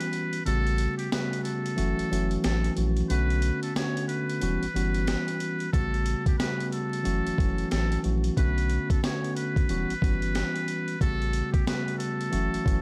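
Dark and reflective, this short boom-bap hip-hop excerpt swings at an easy pace, with a gritty, compressed sampler-style drum kit (thumpy kick, high-tuned snare, hi-hat) up front beside a mellow tine electric piano played through its built-in speakers. A soft, round dub sub bass enters at 0.5 seconds under a cycle of jazzy extended chords, while a trumpet with a metal mute carries the melody in a buzzy, breathy, whispered jazz style with a slapback echo. The sound is dry and intimate, dusted with vinyl crackle.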